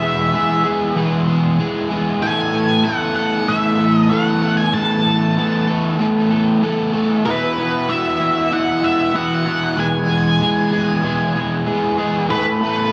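An up-front, double-tracked overdriven electric guitar carries the riff through this short rock passage, its picked tone compressed and given a touch of chorus and the soft grit of cassette tape as it spans from E2 up to A4. Above it, an octave-fuzz lead guitar sings the melody between B4 and A5, its distorted, warm sound colored by tape and an analog delay. The two guitars play together from 0.0 to 12.9 s at a steady 95 BPM in straight 4/4, cut from a longer piece. The harmony moves from E to Asus2, settles on Bsus4 at 7.3 s, then returns to E before landing on Asus2 again. Light reverb and a digital ambience wrap the homemade cassette recording in a studio sheen, leaving a wistful, hazy mood.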